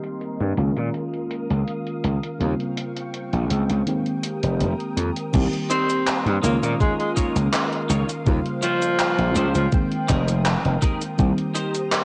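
At 82 BPM in a straight 4/4, a gated 80s digital drum machine sets the pulse with cabasa, hi-hat, handclaps and crash cymbal, and a gritty, overdriven slap bass enters at 0.4 seconds, punchy and up front. This woozy, melancholic vaporwave piece in F minor leans on a mellow FM electric piano with round, warbling chords through analog chorus and delay. Behind it, a silky string machine sustains chords in the background while a filter sweeps across it through the opening section. The harmony cycles through Cm7, Db69, a rootless Eb13 and Fm11. At 5.3 seconds a thumpy electronic kick drum arrives as the second section begins, soon joined by a raspy, distant alto saxophone melody with tape echo and a bright, twangy clean electric guitar riff in the background. Cut from a longer piece, it carries the light reverb and dulled top end of a home cassette recording.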